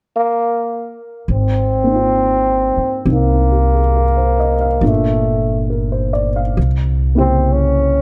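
Jazz ballad in a tender, romantic mood, where a veiled, cup-muted trombone carries the melody up front from 0.2 s, a woody, thumpy pizzicato upright bass enters at 1.3 s, and a mellow, intimate baby grand piano with audible action noise and short sustain joins in accompaniment at 1.8 s, all set in a dark production with moderate spring reverb.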